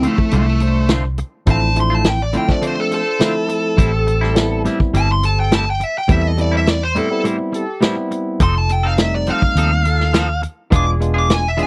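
Mournful and brooding, this straight-eighth soul blues in A minor moves at 104 BPM, with a dark, smooth overdriven lead guitar soloing up front over chords running from Dm7 through Am7 and F7 to E7b9. A round, foam-muted vintage bass and a dry soul drum kit with a tight kick and rolled-off top sit forward, while a barky, lightly overdriven tine electric piano and a twangy clean guitar playing stabs with harmonic tremolo fill out the middle. A mellow horn section holds sustained chords from 0.6 seconds, all captured in a close, dry 1970s-style studio sound in this short cut from a longer piece.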